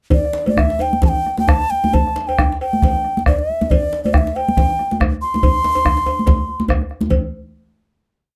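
West African traditional drum ensemble music, festive and powerful, that speeds up from 131 to 153 BPM in 4/4 with a lightly swung sixteenth feel, closing on a final hit at 7.1 seconds. An up-front, airy clay alto ocarina with a straight, tongued tone and lifted highs carries an expressive melody of call phrases between D5 and C6, stopping at 6.6 seconds. Underneath, a deep, dark bombo sits up front in a small room, while a warm djembe in a live room, ringing high-tuned congas played close and dry with soft hands, and a metallic, band-limited vintage cowbell playing a bell pattern fill out the groove in light reverb.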